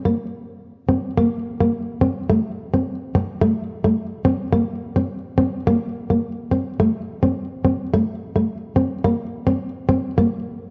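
A wet echo chamber reverb with a 2.0-second tail hangs around this short cut from a longer piece, set within a small room ambience. A lone nylon-string guitar sits up front, playing by itself from 0.1 s to 10.4 s. Its acoustic tone is full-bodied and thumb-plucked, with a deep classical character, and its line stays between A3 and C4. The style is highlife in a straight 4/4 feel, and the mood is warm and danceable.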